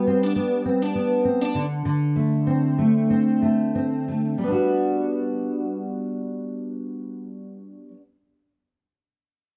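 A rough home-demo sound with a wet, small-room ambience frames this short, easy-going pop fragment in G major, played by a lone fingerpicked steel-string acoustic guitar. The dark, full-bodied dreadnought tone sits up front, double-tracked and bathed in plate reverb, moving from G to D5 over a lightly swung 4/4 feel that eases back from around 103 toward 88 BPM in the opening 4.4 seconds. A heartfelt new passage opens on a Gmaj7 at 4.4 seconds, and the guitar rings on until 8.0 seconds.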